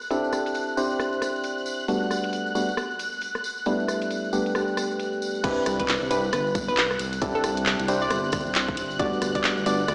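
Swung sixteenths at 135 BPM drive this bouncy, soulful UK garage two-step cut in C lydian, where an up-front garage kit of filtered hats, handclaps, rim clicks and crash, a jingly tambourine, dark hollow organ stabs with tape echo and a smooth, warbling vintage pad pumping beneath Cadd9 and Gmaj9 chords carry the opening until the drop at 5.4 seconds brings in a tight electronic kick and a bright, detuned square-wave pluck melody, joined at 5.7 seconds by a deep, rumbling saw bass, all heard through stone-room plate reverb with a small-speaker character.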